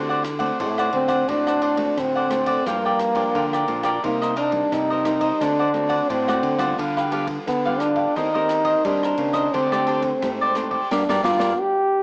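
Nostalgic and yearning, this samba and choro excerpt puts a breathy, mellow trombone up front with vibrato and scooped notes over crisp picked cavaquinho, a dark fingerpicked nylon-string guitar, a full-bodied nylon-string bass guitar in the background, and an open jazz kit with boomy kick, dark cymbals, rim clicks and snare, all bathed in spring reverb with a small-speaker cassette home-recording sound and a band accent at 10.9 seconds.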